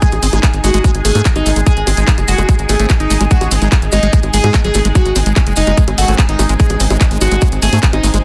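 A gritty, screaming overdriven synth lead carries the melody in this hypnotic, intense psychedelic trance excerpt at 146 BPM in 4/4, its bright, guitar-like tone shaped by distortion, vibrato, phaser, tape echo and sidechain pumping as it moves between D#4 and G#4 in G# major. Beneath it, a tight, punchy sequencer bass drives the low end with a saturated sawtooth-and-square pluck, while a squelchy, resonant liquid acid bass riff sits in the background with its own phaser, tape echo and pumping. An up-front layered electronic kick leads the drums alongside a tape-toned garage kit of bongos, handclaps and hi-hat, both in a small room ambience, with very quiet grainy maracas adding texture. A dark, woody studio string section played sul tasto lends a lush, pumping bed, and from 0.3 seconds a very quiet warbling drone with moving overtones and a faint wobbling formant-sweep bass line fill out the middle. 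The mix is dry, dense and heavily limited in a modern style, and the excerpt is cut from a longer piece.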